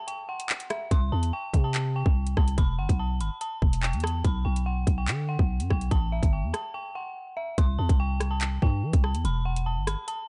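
Drill hip hop at 144 BPM in a half-time feel, ominous and cold, opens on an eerie, detuned synth bell melody with chorus and delay, joined by an up-front electronic drum kit of hard-clipped kick, metallic hi-hats, handclaps and rim clicks, and a growling, buzzy 808-style bass entering at 0.9 seconds, all in a dry mix cut from a longer piece, with breaks at 0.0 and 6.7 seconds and chords moving from C5 through E5, Bm and A5 to C and Em.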